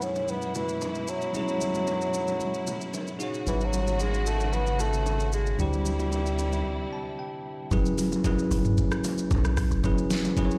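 A hypnotic, late-night amapiano excerpt opens with a soft-attack bassoon melody carrying tape echo over bell-like tine electric piano, lush bowed strings, a knocking electronic drum kit with metallic hats and distant bongos and congas, as a punchy sine sub bass joins at 3.5 seconds, the electric piano fills a brief break at 6.7 seconds, and a round, decaying log drum bass takes over in the drop at 7.7 seconds, all heard through a big sound system in a bare room with large studio reverb.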